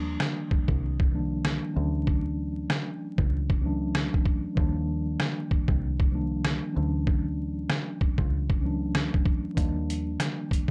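A mellow tine electric piano, colored by cassette tape and filtering, opens this soulful boom-bap hip-hop excerpt at 96 BPM, moving between Ebmaj9 and Dmaj9 over a dark, round, foam-muted fingered bass. At 0.2 seconds a gritty, compressed, pitched-down sampler-style kit joins up front with a thumpy kick, medium-tuned snare, rim clicks and swung hi-hats, sounding re-recorded in a small room. Vinyl crackle and light reverb give the short clip a dusty, warm glow.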